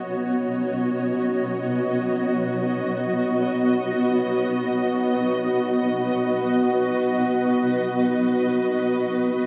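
Drifting in free time, this peaceful, weightless ambient fragment from a longer piece sets a cloudy, blurred granular pad of sustained chords up front, with shimmer reverb, over a warbling, vintage analog drone with chorus murmuring in the background, both sounding together throughout the 9.5 seconds inside a huge, wet reverberant space.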